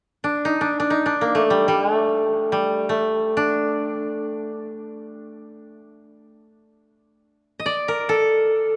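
A dark production in a moderate cathedral reverb frames this calm, austere fragment of a longer piece of Japanese traditional chamber music, where a solo koto, played with fingerpicks and sounding dry, woody and up front, enters at 0.2 seconds and unfolds in free time in D miyako bushi, spanning G3 to Eb5 until it stops at 8.8 seconds.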